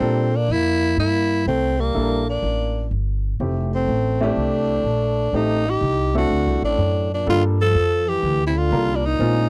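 This relaxed, playful jazz clip opens with all four parts together: a growling tenor saxophone carrying the melody up front, a trombone second line, concert grand piano accompaniment and pizzicato upright bass, all sounding through the full 9.5 seconds. The tempo sits at 124 BPM in 4/4 with a swung eighth-note feel, moving through Gm7, C13, Fmaj7, Am7b5 and D7 before arriving on Gm9 at 7.3 seconds, where a new section begins. The saxophone's tone is breathy, raspy and gritty in a solo jazz style, while the trombone, warm with vibrato, sits distant and roomy in the background. The piano sounds intimate and natural, with audible action noise and deep bass, and the woody, dark bass sits close to the front. The dry, close recording has the character of a 1970s studio session, and this short cut is taken from a longer piece.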